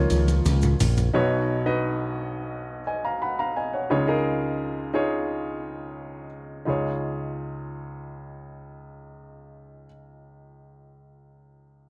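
A dry, close 1970s-style studio sound frames this hopeful piano-driven pop excerpt in Db major at 87 BPM, where a clear, polished baby grand carries the accompaniment throughout, while a gritty, compressed sampler-style breakbeat kit fill of hi-hat, ride and toms, an overdriven picked electric bass up front and a grainy egg shaker in the background all drop out at 1.1 seconds, leaving the piano alone over Cbadd9 and Dbadd9 chords.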